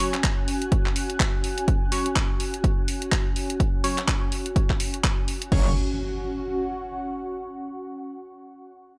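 A distorted, metallic wobble bass bursts in at 5.5 s alongside an electronic impact in this gritty, aggressive bass house excerpt at 125 BPM with a swung 16th feel, following a punchy, up-front kick from 0.2 s and a small-room house kit of crash, handclaps and hi-hat, while a nasal, band-passed sawtooth chord stab with phaser, dub echo and sidechain pumping sits over an ethereal, airy pad with ensemble chorus that lingers to 7.4 s in a lightly reverberant space.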